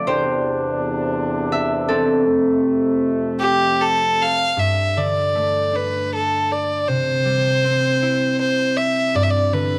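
A bright, ringing concert harp opens this fragment of a Celtic slow air, fingerpicked up front and carrying the accompaniment from the start, while a mellow brass ensemble holds sustained chords in a distant, roomy classical style. The mood is wistful and nostalgic, moving in a rubato 3/4 at roughly 74-83 BPM over chords that shift from Cadd9/E and F toward Gsus2, C and G. At 3.4 seconds a rich, nasal fiddle enters with the melody, played by a single bowed player up front with a smooth, even tone, a boxy edge and light vibrato. The brass drops out at 4.6 seconds, leaving the fiddle singing over the harp until the fragment ends. A moderate spring reverb and studio ambience give the whole a gentle sense of space.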